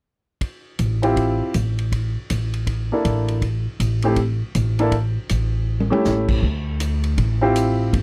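This dry, close recording has a 1970s studio character, with the bass and piano placed up front. It is a short cut of brassy, swinging big-band jazz in a swung 4/4. The drum kit enters at 0.4 seconds with a natural, acoustic sound and a big-room feel, using a medium-tuned snare, a punchy kick, hi-hat, ride, crash and toms, and it plays a fill just before the harmony settles onto Dm11. Pizzicato upright bass joins with a dark, steel-strung tone in a low register. The bright upright piano adds brilliant, open-sounding accompaniment, moving through Am7, Bbmaj7#11/A and A7 on its way to the closing chord.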